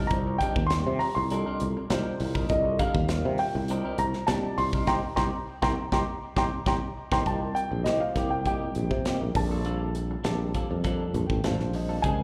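Driving and intense, this short cut from a longer electric jazz fusion piece moves in a straight 4/4 over Cm9, then Cm7 and Bbmaj7 after the change at 7.3 seconds. A dark, mellow grand piano with a worn, intimate tone and audible action noise carries the melody high in its range, touched by slapback echo, while a tine electric piano sits in the background through its built-in speakers, adding clean accompaniment and fills. A picked, compressed electric guitar with a twangy, scooped character supplies stabs through subtle chorus, slapback and tape echo, and a growly, up-front fretless bass sustains underneath with a bright, direct edge. A polished modern drum kit, airy and small-roomed with a punchy kick and medium-tuned snare, joins at 0.1 seconds and plays a fill leading into the second section during a full-band accent. The whole performance comes across as a live gig heard through the venue's PA, wrapped in club reverb.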